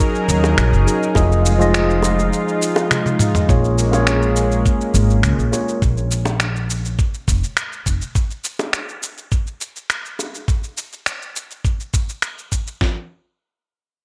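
A woody, pizzicato upright bass sits up front in this relaxed, wistful sunset chillout excerpt, playing from 0.3 s until 8.0 s. A mellow tine electric piano with analog delay and a lush, detuned unison pad with chorus carry the chords in the opening seconds. A dusty, sampler-style kit of finger snaps, shaker and toms is joined from 1.2 s by a gritty, compressed kick and snare, with tight, high-tuned bongos in the background; a short break and drum fill lead into the next section, and the harmony later drops away under light digital ambience.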